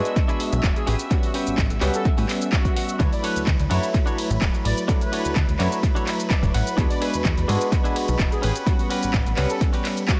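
This funky, feel-good slice of filtered disco house opens with a barky tine electric piano played through a combo amp, lush bowed strings sustaining chords in the background, and a twangy, direct-recorded clean guitar riff roughened by vintage 12-bit sampler grit. A tape-warm analog drum machine with handclaps, hi-hat, ride cymbal and shaker slips in almost at once, followed by an overdriven, layered electronic kick that sits up front and drives the groove. At 0.5 seconds a plucky, detuned analog bass arrives with a fast attack, a decaying filter pluck and a moving notch, and at 0.8 seconds a fat, wave-folded synth brass line with chorus and a filter sweep adds a bold melody from behind. The guitar breaks into fills at 1.6 seconds and again later, while tape echo trails the piano, guitar, drum machine and brass. Sidechain pumping makes the piano, strings, guitar, bass, brass and the machine's hats, cymbals and percussion breathe around the kick, all set in light reverb and digital ambience for an echo-heavy mix.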